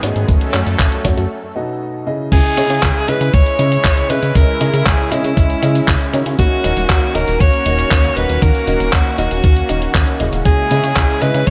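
Melodramatic and bittersweet, this italo disco passage, cut from a longer piece, moves at 118 BPM in a straight 4/4 and sits in C# dorian. A lush, detuned sawtooth pad holds chorused chords throughout, while a dark, boxy grand piano with long sustain punctuates the harmony with stabs trailed by digital delay. Beneath them, a glossy, retro synth bass blends pulse and sawtooth tones with a plucky filter, and a gritty, tape-warm sampler-style kit adds crash, handclaps and hi-hat under gated reverb, joined at 0.3 s by a thumpy, compressed electronic kick. After a short break, a bright, forceful alto saxophone enters up front at 2.3 s with vibrato and a smooth top, roughened by 12-bit sampler grit and digital delay. The chords pass from F#m and B into C#madd9, move to D#m7, and return to C#madd9, all set in a light reverb.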